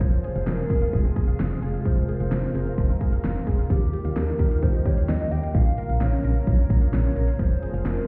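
A round, dark FM bass and a punchy electronic drum kit with a fat snare sit up front in this cool, nocturnal synth-pop piece in F minor at 130 BPM, moving through Fm, Ebadd9 and Bbm. Above them, a hollow, woody clarinet-like lead carries the melody with vibrato, chorus and tape echo, while a shimmering, retro pulse-width pad holds sustained chords. A lush, detuned unison pluck plays arpeggios with tape echo in the background, and the whole short cut sounds muffled through a wall, wrapped in stone room reverb.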